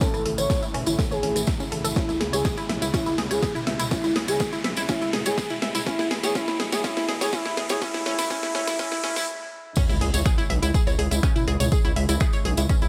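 Dramatic and cinematic, this melodic techno passage in C# minor moves at 123 BPM in a straight 4/4, cut from a longer piece and built as a tension-filled build-up that breaks into a drop at 9.8 seconds. A punchy, tape-warmed electronic kick sits up front, joined by a layered house kit with a cracking snare, hi-hat, rim clicks, finger snaps, toms and crash, re-recorded in a large room, plus a jingly, close and dry acoustic tambourine. A gritty, aggressive synth bass with oscillator sync and saturation pumps against the kick from 0.1 seconds, while a round, detuned analog pluck spins bright arpeggios through chorus and tape echo under a filter sweep. Above it, a smooth, mellow portamento lead sings the melody with vibrato and a cassette-tape tint, also swept by a filter, as a very quiet, soft-attack pad holds sustained chords moving from A to C#m and back. A drum fill and background riser push the build until everything stops at 9.3 seconds, then an impact lands with the drop on C#m. 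The mix is dry and gritty, with light reverb and digital ambience.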